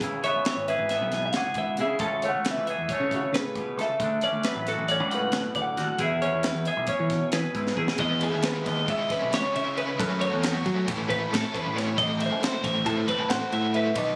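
This excerpt sounds like a phone capture of a studio room, lightly reverberant and compressed, with a bright, wistful math rock and midwest emo feel in a fast, straight 9/8 at 270 BPM in E mixolydian. A growling, overdriven picked bass sits up front while a crisp fusion kit with a high-tuned snare and punchy kick drives on hi-hat, ride, snare and kick. The melody comes from an electric guitar through a small old amp, slightly broken-up with digital delay, set against bright, clean twelve-string arpeggios bathed in spring reverb. A clean, fingered electric guitar adds twangy accompaniment for the opening stretch, with chords moving from C#m7 through Amaj7/C# and Dmaj7 to E6, before a drum fill at 7.7 seconds. At 8.0 seconds that guitar stops and a raw, double-tracked garage guitar takes over with an overdriven tremolo riff as the harmony shifts through Emaj7, F#m7 and Aadd9 to a closing Amadd9.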